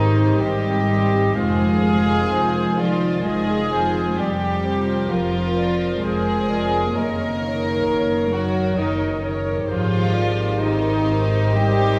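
Floating, pure symphonic violins sit up front in this hopeful, moving cinematic score for orchestra in Ab major, a rubato 3/4 at 65 BPM, while a dark, intimate studio violin section carries the soft sul tasto melody in the background alongside a classical solo clarinet line, violas with light vibrato, ringing fingerpicked concert harp arpeggios, distant cellos and shadowy double basses. The strings are all bowed with gentle attacks, and everything is set back in a lush scoring-stage reverb as the chords move from Abmaj7 through Fm7, Bbsus2/F and Gb6 back home.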